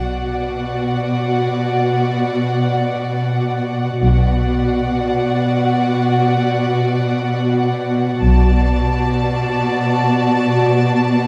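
Cinematic strings in free time and B minor set an ominous, tense mood across this brief excerpt, with bowed sections resting on a single B minor chord. A close, expressive violin section carries the melody between F#5 and A5 with vibrato and portamento, while a second, lush violin section with a smooth top holds a focused inner line. Beneath them a distant, even cello section sustains B2 and a rich double bass section holds B1 until 9.2 s, all bathed in the dark, wet reverb of a scoring stage.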